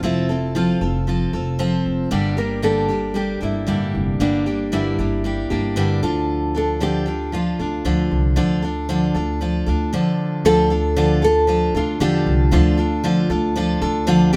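Recorded live by an acoustic band in one room, the sound sits in a moderate studio reverb. This tender, wistful acoustic pop fragment is cut from a longer piece and moves in four with a light swing on the sixteenths. Up front, a picked steel-string dreadnought guitar carries the accompaniment with a full-bodied, woody tone and the character of old strings, moving from F to G minor and settling on D minor by 6.0 seconds. Above it, a small-sounding nylon-string guitar plays the fingerpicked melody with audible finger squeaks, stopping at 14.0 seconds just before the end. Underneath, a pizzicato upright bass on steel strings adds a thumpy low end, and at 10.4 seconds the music moves into a new section.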